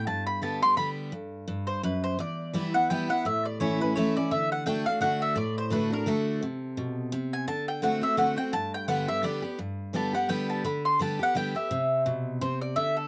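Mandolin and picked steel-string acoustic guitar start together, setting up a driving, virtuosic bluegrass waltz at 170 BPM in 3/4 with a swung eighth-note feel in G major. The mandolin carries the melody up front, its double strings giving a warm, round tone. The guitar sits just as close in accompaniment, its dreadnought body sounding bright and full-bodied, with fresh strings and the occasional finger squeak. The harmony moves from G through Gsus4, Em, A and D, then Amadd9 and D7 back to G. At 9.6 seconds the mandolin steps into a solo over a move to C, and the excerpt cuts off at 13.1 seconds. The sound is a dry, close 1970s-style studio recording with only light reverb.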